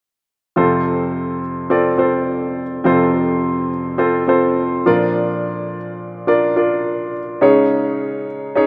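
Pop piano in F major at 105 BPM in a straight 4/4, uplifting and hopeful in mood, cut from a longer piece. A clear baby grand piano carries the accompaniment from 0.6 to 8.7 seconds, spanning F2 to D5, its tone present, polished and up front. The harmony moves from F to Bb at 4.9 seconds and lands on a Dbsus2 at 7.4 seconds. A wet plate reverb with a 3.1-second tail surrounds the instrument, and the tuning sits at A4 = 442 Hz. The overall sound has the rough character of a home demo mix, even as the piano itself stays clear and forward.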